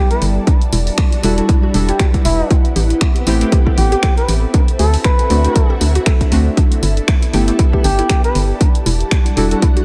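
Swung sixteenths drive this late-night, moody deep house excerpt, where an overdriven, punchy electronic kick arrives up front at 0.5 s beside a hollow, organ-like FM bass, a tape-warm analog drum machine of finger snaps and hi-hat carries dub echo, and a veiled bucket-muted trumpet with vibrato and scooped notes plays a jazz-style melody through analog delay, while deep, full-bodied chord stabs from 1.2 s join the woody arpeggios of a mallet-like synth pluck, a silky string machine and an ethereal airy pad in an echo-heavy mix.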